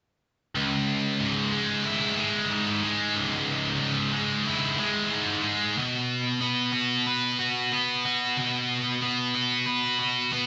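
A straight 4/4 pulse drives this short metal excerpt, cut from a longer piece and carrying an aggressive, relentless mood. A scooped, high-gain electric guitar plays the riff from 0.6 s to 10.5 s. It is picked, double-tracked and placed up front, with bright, distorted tone that ranges from C#2 to B4. The harmony sits on C# minor before moving to a B5 power chord at 5.8 s. The sound is that of a band playing live in one room, wrapped in a wet studio reverb, with nothing above 7.8 kHz.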